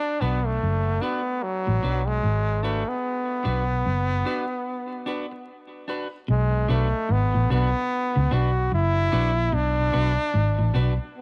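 Light reverb and a layer of vinyl crackle give this excerpt from a longer piece a vintage surface. It is a laid-back, serious reggae groove at 74 BPM in 4/4, swung on the sixteenths and sitting in B dorian on a Bm chord. A brilliant, punchy trombone carries the melody up front from the very start, played forcefully in a pop style with vibrato and a tape echo trailing its phrases. At 0.2 seconds the rest of the band arrives. An up-front muted fingered electric bass plays a dark, round, amped line, and a warm, very quiet, compressed fingered clean electric guitar plays a low riff. A dark, picked clean guitar adds accompaniment higher up, its pitch drifting in a warbly way through its own tape echo. A break from 4.7 to 6.3 seconds leads into the second section, with the trombone carrying on as soloist to the close.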